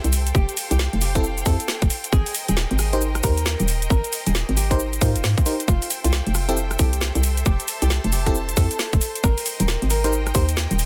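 A dry, dense and heavily limited mix carries this sunny, bouncy two-step UK garage excerpt at 135 BPM in F major, where a woody, fingerpicked nylon-string guitar melody with dub echo sits over clear, vibrato-rich violin section chords pumping from sidechain, a hollow, punchy FM bass and a tight, up-front electronic kick that enters at 0.3 s. A swung garage kit of snare, rim click, shaker and metallic hi-hats drives the groove, and glassy, bell-like FM electric piano stabs arrive at 1.2 s, coloured by chorus, cassette tape and dub echo, as the harmony moves between Fmaj9 and Abmaj9.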